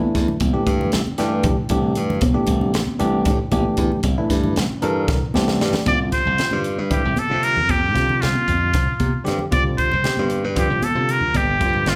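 Electric jazz fusion in 7/8 with a straight feel, this slick, soaring passage is cut from a longer piece and played by a band live in one large studio room with moderate reverb. A barky, bell-like tine electric piano carries the accompaniment from the start, joined by a glassy, punchy slap bass and a polished, airy fusion drum kit of hi-hat, kick and high-tuned snare. Congas with a thin, high-tuned skin and soft hands sit close and dry in the background. The harmony rests on C before moving to Csus24, and just ahead of that change the drums and electric piano play fills from 5.1 seconds. At 5.9 seconds a trumpet with a straight mute steps up front for a nasal, breathy jazz solo with vibrato and a smooth top, closing over a G7sus4 chord.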